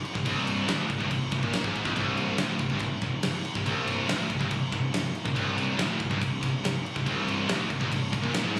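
Heavy metal at 141 BPM in a straight 4/4, dark and epic, this brief excerpt cut from a longer piece rides on a C5 power chord from the first beat. A big acoustic rock kit sits up front with a fat snare, punchy kick and crash cymbal, while two picked high-gain guitars, one scooped and both bright and distorted, enter at 0.1 and 0.2 seconds to play the low riff in the background. Beneath them, a fingered electric bass adds a growly, overdriven fuzz, all heard through a phone recording of the room with little reverb and firm compression.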